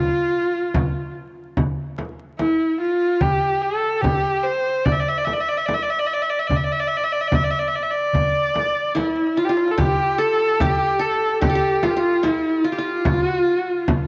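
A straight 4/4 pulse at 73 BPM comes from a high, clay-shelled darbuka struck with hard hands and a deep, large frame drum placed up front, setting a melancholic, hypnotic mood for this fragment of a Turkish makam ensemble piece. Over them a single bowed kamancheh carries the melody with a clear, focused tone, vibrato and portamento, its sound coloured by cassette tape. A drum fill at 9.0 seconds leads into a repeat of the opening section, just after a bright-edged qanun, played with fingerpicks on triple strings and touched with tape echo, enters at 8.9 seconds with a second line, all set in a lush hall reverb with the character of a home cassette recording and vinyl crackle.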